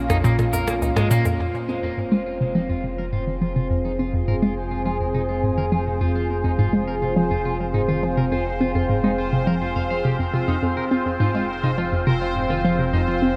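An evolving, warbling wavetable pad, up front with phaser and its own reverb, opens this hypnotic, cosmic stretch of sequencer-driven space music in F minor at 104 BPM, over a fat, detuned sawtooth bass and a bouncy, hollow square-wave pluck riff with chorus and delay. Brief electronic blips and a tape-toned shaker with delay sound only until 1.4 seconds, when the harmony moves from Bb minor to F minor and a resonant, bubbling sawtooth texture with random filter steps enters. A twangy, slightly broken-up electric guitar plays delayed arpeggios and fades in from 1.4 seconds, all bathed in a huge, wet ambient reverb.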